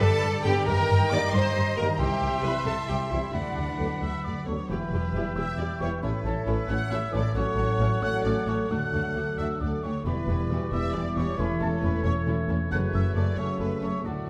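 Up-front double basses lay a smooth, rich bowed foundation beneath a lush violin section carrying the heroic melody of this swashbuckling 6/8 film-score passage, with a darker, softer-edged second violin section, expressive violas and very quiet, focused cellos filling out the strings. Airy flute, a solo oboe with a smooth top and a roomy, distant clarinet add woodwind lines, while fingerpicked harp arpeggios ring in the background. Trombones join at 0.4 s and mellow French horns at 0.5 s with sustained chords, all set in a recital-hall reverb that gives the adventurous music a grand, spacious feel.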